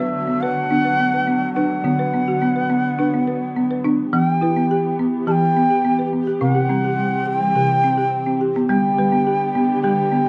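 A woody, rustic marimba played with medium hard mallets spins arpeggios up front in this meditative, hypnotic world piece in E minor at 105 BPM in 4/4, alongside a pure, reedy bansuri melody with vibrato and a dark, nasal chamber string section holding soft-attack sul tasto chords, over a progression from D into Em, C and G, heard through a small, wet room and the warbly pitch drift of worn cassette tape in this short cut from a longer piece.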